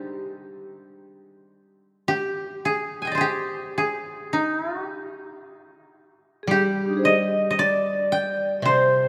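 A woody, dry koto plucked with fingerpicks sits up front in a moderate church reverb, carrying a calm, austere melody in this fragment of slow, rubato Japanese chamber music in G miyako bushi at 55 BPM in 2/4, while a ringing, metallic vibraphone struck with hard mallets, with a slow motor vibrato and a vintage, band-limited tone, sounds briefly at the start and returns as a second line at 6.4 seconds, just before a second, lower koto enters with accompaniment at 6.5 seconds.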